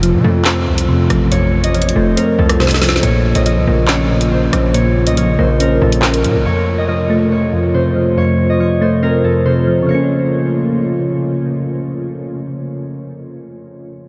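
A fingerpicked concert harp carries the melody from 1.3 s to 11.8 s, its ringing acoustic tone softened by a low-pass filter and trailed by analog delay. This tense, ominous drill cut sits at 140 BPM in a half-time 4/4 feel, in Bb harmonic minor, and is taken from a longer piece. Beneath the harp, soft electric-piano-like synth keys with a round, mellow, detuned character and chorus play accompaniment, while a dark analog pad holds deep, moody sustained chords with chorus. A distorted 808-style bass, heavy and saturated with a noise layer, drives the low end alongside a drill drum kit of handclaps, hi-hat, rim click and a woody snare, with a fill at 2.6 s. The drums drop out around 6.3 s and the bass at 6.5 s, leaving the harp, keys and pad to drift over chords moving between F and Bbm. The whole mix is dreamy and soaked in a huge ambient reverb.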